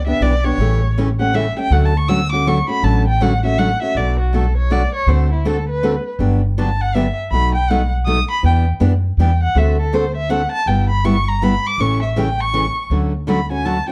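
A brisk swing in 3/4 at 161 BPM, with eighths swung at 62%, drives this playful jazz manouche piece for acoustic strings, set in D major and tuned to A4 = 439 Hz, and cut from a longer performance. A single bowed violin carries the melody as a solo from the start. Its expressive line, shaped by vibrato and portamento, sits up front yet has a distant quality, carrying plate reverb as it ranges from E4 to E6. Beneath it, a pizzicato upright bass with steel strings sounds woody, growly and thumpy, while a picked steel-string acoustic guitar with an auditorium body supplies the accompaniment from 0.1 seconds. The harmony moves through Em7, A7 and Dmaj7, then touches Bm7, Gmaj7, B7 and G6 before landing back on Dmaj7 at 12.9 seconds, all within light reverb and a dark, warm production.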